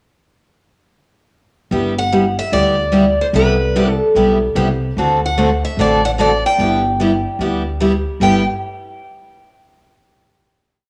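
A home cassette recording with moderate spring reverb frames this charming and lively piece of acoustic string swing in G major, moving at 148 BPM with a swung eighth-note feel over G6, Cmaj7 and D7. From 1.7 seconds an up-front, bright rhythm guitar plays four to the bar with short accents on two and four, while a very quiet, parlour-toned plugged-in guitar adds a second rhythm part and a woody, thumpy gut-string upright bass plucks a two-beat root-and-fifth line with walk-ups. At 2.0 seconds a picked lead guitar with fresh strings and audible finger squeak enters with a free, tape-tinged melody, and the piece settles on a final chord at 8.2 seconds.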